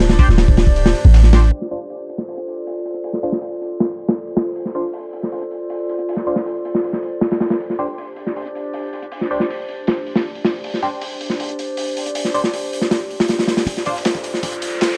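A frenetic, dark drum and bass passage with a jungle edge opens on a drop, where a boomy 808-style bass sounds only until 1.5 s beneath a warbling, lo-fi pad of sustained chords, a saturated, up-front breakbeat kit with a punchy kick and a very quiet, compressed soul sampler-style kit. A nasal, band-passed sawtooth chord stab with ring modulation, phaser and dub echo carries a long filter sweep through the middle, while the gritty breakbeat rolls on over shifting minor and suspended harmony. The faint sampler kit returns for a build-up from 13.7 s, and an electronic riser enters at 14.2 s, all within a dark, low-passed mix and a light studio reverb.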